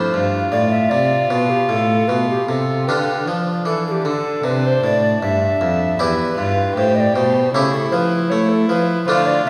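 A resonant recital hall or church acoustic wraps this short passage, cut from a longer baroque-style sonata movement with continuo, in a steady, straight 4/4 that feels flowing and radiant. The alto recorder carries the melody in a mellow, hollow, airy voice, its tongued notes carrying a wooden chiff, vibrato and lifted highs. Beneath it the violin plays a second line with a nasal, reedy gut-string tone in period style. The harpsichord sits up front with a bright, plucked, mid-forward Flemish-style sound on one set of strings. The cello anchors the bass close and forward, its warm bowing showing light vibrato and an airy edge. All four play together throughout the 9.5 seconds, moving from Dm7 through G13/A and C to A7/C#.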